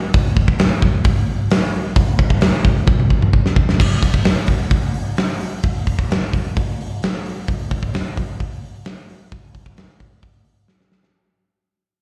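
Rock drum excerpt with a gritty, swaggering feel in a straight 4/4, carried entirely by a big acoustic kit of punchy kick, fat snare, toms, hi-hat and bright crash cymbal, dark and smooth in tone and placed up front. A fill at 2.9 seconds leads into the second section, which fades out from 3.8 seconds through to the end, with another fill arriving at 10.7 seconds. The sound is that of a live gig heard through the venue's PA, with moderate club reverb and the bloom of a recital hall around the kit.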